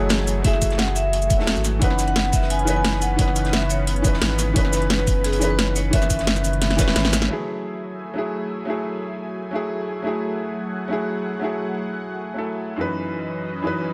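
Set in a small room with light reverb, this soulful, rolling liquid drum and bass excerpt at 175 BPM in F# dorian opens on a drop where a ringing vibraphone with dub echo carries the melody over a smooth, vintage baby grand piano with tape echo, a lush detuned sawtooth pad with chorus, phaser and sidechain pumping, a deep round sine sub bass, a knocking electronic kick, an up-front kit of cracking snare, metallic hats and shaker, and a gritty breakbeat kit in the background, until a drum fill at 6.6 seconds leads to 7.3 seconds, where only the piano and pad continue, moving between F#m9 and C#m9/F#.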